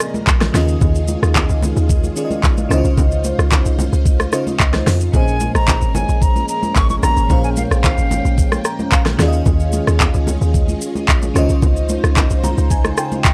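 A hypnotic, late-night amapiano groove in Bb dorian at 111 BPM opens on an up-front electronic R&B kit with a knocking kick, fat snare, smooth hats, claps, rim clicks and shaker, alongside a crystalline, sparkling FM electric piano with chorus and a lush, vintage string machine that pumps beneath its ensemble chorus. As a barely audible downlifter slips by, ringing congas settle in the background, and a deep, round log drum bass arrives at 0.3 s, dark and percussive over Bbm11, Eb9sus4 and Dbmaj9 chords. A breathy, close-miked concert flute sings an expressive, straight-toned line with analog delay from 5.1 s, and the electric piano adds fills at 8.4 s and again at the close of this dry, gritty cassette-tape excerpt.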